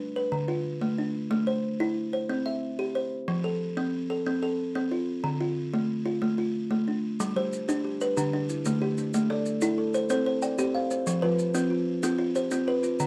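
A rolling 12/8 lilt at 123 BPM, counted in dotted quarters, drives this warm, rippling mbira-style piece of southern African traditional music, cut from a longer work. A buzzing kalimba opens alone, spinning interlocking arpeggios from D3 up to G5; its thumbnail-plucked tones sound woody, bright and short, with an airy rattle from a solid board, placed up front in the mix. At 7.2 seconds grainy, mellow maracas slip in quietly underneath, their acoustic shake compressed and saturated. A second buzzing kalimba joins at 7.4 seconds, thumb-plucked on a hollow box between D3 and D5, its notes ringing longer beneath the first. The harmony cycles through D minor, A minor, C and F before moving toward G and open fifths on D, C and F. Light reverb softens a dry, close recording with the intimate character of a 1970s studio.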